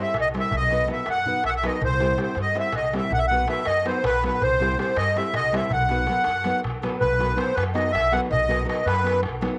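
A restless 7/8 Balkan wedding-band groove drives this fiery fragment, with a reedy, sweet accordion carrying the melody up front over fingerpicked, full-bodied nylon-string guitar, woody pizzicato upright bass and a crisp, distant metal-shell darbuka that plays a short fill at 1.3 seconds, all set in a small room with light reverb as the harmony swings between C and B.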